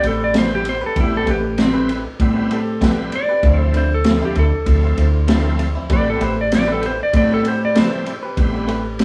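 A crunchy breakbeat kit, with a tight kick, high-tuned snare and dark ride cymbal, sets a straight-eighth soul blues groove at 97 BPM in A minor, alongside a round, woody fretless bass up front. A clean lap steel guitar carries a brooding, soulful slide melody over a shouting, lightly overdriven tonewheel organ with chorus vibrato and a slow rotary speaker, while a mellow horn section holds very quiet sustained chords and a twangy, direct-recorded electric guitar picks compressed stabs in the background. The harmony moves from Am9 to Dm9 at 3.4 seconds and returns to Am9 at 5.9 seconds, and the band sounds as if it is playing live together in a large studio room with moderate reverb, in this short cut from a longer piece.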